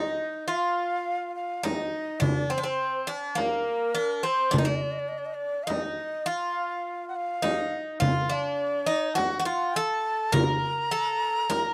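Up front, a bright, metallic Greek bouzouki carries the melody with picked double strings, some of them octave-doubled, while a breathy, reedy ney with vibrato plays a second line above it in this stately Turkish makam ensemble piece in F makam hicaz, moving at 104 BPM in a straight 10/8. At 1.6 seconds a crisp, small metal-shelled darbuka enters close and dry, together with a deep frame drum that sits distant in a large room. The close, 1970s-style studio sound keeps this warm excerpt, cut from a longer piece, dry with little reverb.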